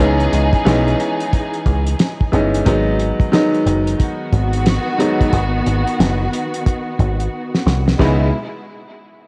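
Boom-bap hip-hop in C# minor, this short cut from a longer piece moves at 90 BPM in 4/4 with a 63% swing on the 16ths, setting a tough, dark mood. A bright, woody upright piano with short sustain carries the accompaniment up front, moving from C#m9 to G#m7 at 2.7 seconds and back to C#m9 at 8.0 seconds. Behind it, a distant studio string section adds lush, bowed stabs with vibrato, filtered and trailed by tape echo. A deep dub picked electric bass sits low and round beside a cloth-damped, thuddy drum kit whose fat snare, tight kick and hi-hat have a dry, rolled-off top and a cassette-tape color. The drums play a fill from 7.3 to 8.0 seconds before dropping out at 8.2 seconds, and the whole track carries the small-room character of a home cassette recording.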